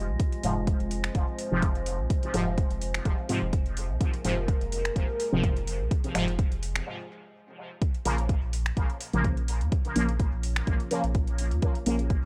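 Dub techno at 126 BPM in Bb minor, this short cut from a longer piece feels meditative and deep, with a light swing on the sixteenths. A deep, up-front electronic kick anchors the groove alongside a soft vintage rhythm box of finger snaps and metallic, overdriven hi-hats, while a round sine sub bass with tube saturation holds the low end under sidechain pumping. A juicy, detuned sawtooth polysynth plays resonant stabs through chorus, phaser and dub echo, its filter sweeping across the whole passage, and a dark, moody analog pad sustains chords with a slow attack and long release. A glassy texture of drifting overtones sits in the background with chorus and its own reverb until 6.9 seconds, when a brief break arrives before the harmony moves from F minor to Bb minor at 7.8 seconds. The recording has a dry, gritty hardware character with transformer saturation and a digital ambience.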